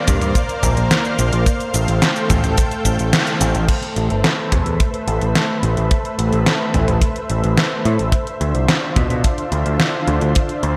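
A straight 4/4 pulse at 108 BPM drives this nocturnal synthwave excerpt in A minor, anchored by a tight, up-front acoustic kick drum from a small room. Around it, a detuned 8-bit digital drum machine with a sampler-style, tape-warm character supplies crash cymbal, hi-hat, shaker, a medium-tuned snare and toms, re-recorded in a large room and treated with gated reverb. An overdriven picked electric bass, captured direct and amped, holds the low end with sidechain pumping. The silky, sawtooth analog string pad pumps in the same way, its detuned, slow-attack chords shimmering with ensemble chorus and vibrato. The harmony moves from Bbadd9 to Fadd9/A, and the kick drops out at 3.1 seconds under a band accent, returning at 3.7 seconds as the music shifts to Amadd9 and later Dm7. A lush hall reverb and a bright, 1980s-style digital production give the piece its glossy, driving sheen.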